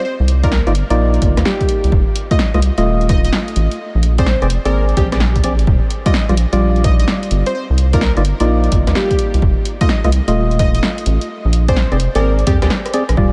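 Soulful and sunny, this UK garage excerpt rides a swung two-step groove at 128 BPM, with a rubbery, wave-folded square bass up front, hollow organ-like stabs colored by chorus, cassette tape and tape echo, a mellow detuned unison lead carrying the catchy melody, and a punchy analog drum machine and electronic kick re-recorded in a small room, all moving through Cm11, F7, Bb9 and Ebmaj9 before a drum fill and break at 12.7 seconds end on a band accent at 13.1 seconds.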